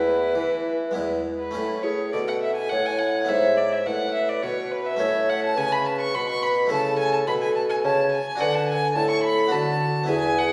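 Classical baroque-style sonata movement with continuo in a dance-like, radiant 3/4, played with rubato in this short excerpt cut from a longer piece. A mellow, hollow tenor recorder with airy, soft-attacked vibrato carries the melody, while a violin with a gut-string, reedy tone and light vibrato sits up front on the second line. Beneath them a bright, plucked harpsichord in Italian style supplies accompaniment and a clear, present bassoon holds the bass, all heard from further back in a recital hall with a 1.5-second reverb, as the harmony settles from a suspended E onto A around 1.5 seconds.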